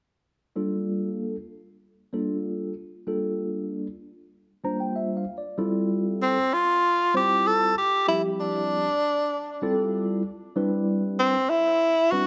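A clear tenor saxophone carries the melody up front from 6.2 seconds, with vibrato and scooped notes in a jazz solo style. It rides over a clean tine electric piano that plays the accompaniment through built-in speakers with a phaser, adding a fill at 4.3 seconds. This driving, intense jazz excerpt in G dorian moves at 96 BPM through Gm9, G13sus4 and D13sus4 harmonies in a moderate, large studio reverb.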